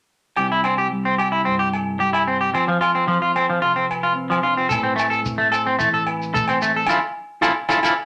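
Bathed in a wet studio reverb, this joyful, sunny highlife guitar band fragment at 110 BPM in C major sets a twangy, slightly broken-up electric guitar's picked arpeggios up front over a dark, fingered clean electric guitar accompaniment and ringing agogo bells, with a grainy, close shekere joining at 4.7 s, chords moving from C through F and Amadd9 to Dmadd9, and a band accent at 6.9 s before the cut.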